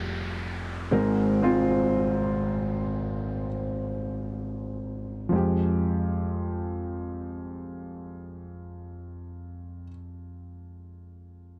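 This pop ballad fragment, cut from a longer piece, unfolds in free time with an emotional, longing mood. A clear concert grand piano carries the accompaniment from start to finish, its natural tone up front in the mix, with deep bass and short sustain. An electronic downlifter sounds beneath it from 0.0 to 5.3 seconds, sitting low in the balance while the opening passage slows down. The harmony moves from Fmadd9 to Abadd9, then returns to Fmadd9 at 5.3 seconds as a new section begins. The dry, close sound of a small room gives the recording an intimate 1970s studio character.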